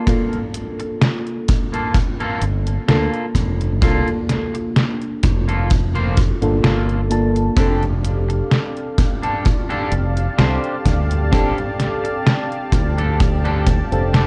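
A gritty, up-front kick drum and a detuned 8-bit drum machine's hi-hat and snare carry this faded, woozy vaporwave excerpt, both coated in vintage sampler grit, while a soft, round FM electric piano with phaser and tape echo plays the accompaniment and a twangy electric guitar on the edge of break-up winds a riff through lush chorus. A bright fingered electric bass with tube saturation enters at 2.4 seconds, and a thick, detuned unison pad joins at 7.6 seconds with sustained chords as the harmony moves from Gm9 to F69. The production is dark and cassette-toned, set in a digital ambience, with a light swing on the sixteenths.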